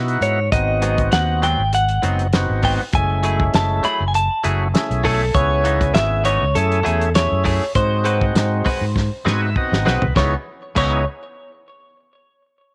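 Straight-eighth soul blues in C# minor at 100 BPM, this short cut from a longer piece has a soulful, smoky mood with a slight swing on the sixteenths. A fingered electric bass sits up front with an amped, warm tone beside a dry, muffled soul drum kit whose fat snare, tight kick and dark cymbals give the groove a lo-fi, rolled-off character. A clean, direct-recorded electric guitar carries the twangy, picked melody in a high register, while a second, quieter clean guitar adds compressed stabs coloured by subtle chorus. Underneath, an overdriven tonewheel organ supplies thick, gritty accompaniment with audible key click, turning through a slow rotary speaker. The changes move among C#m9, G#7#9 and F#m9, and from 9.0 to 10.2 seconds the drums and organ both play fills before the harmony returns to C#m9. Light reverb and a small-room ambience keep the whole close and intimate.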